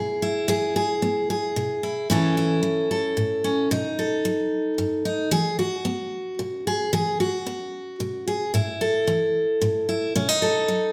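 Country solo for picked steel-string acoustic guitar, easygoing and sunny in a straight 3/4 at 112 BPM, its bright, full-bodied dreadnought tone sitting up front in a moderate recital-hall reverb as it moves through E, A and B chords across this short cut from a longer piece, tuned to A4 = 442 Hz.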